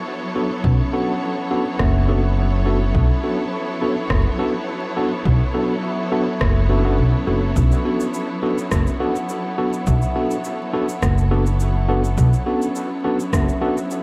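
A distant, bowed string section holding vibrato-laden chords with gentle portamento opens this hazy, deep ambient dub fragment in B minor at 104 BPM, alongside airy, ringing soft-mallet vibraphone arpeggios trailing dub echo in the background. A worn, slightly out-of-tune electric piano adds lightly overdriven stabs with dub echo from 0.4 s. At 0.6 s a woody, dark pizzicato upright bass with tube saturation arrives up front over a punchy electronic kick. From 1.8 s an echoing rim click and cabasa enter over the lightly swung 16th-note feel, all resting on a single Bm7 chord amid vinyl crackle and light small-room reverb.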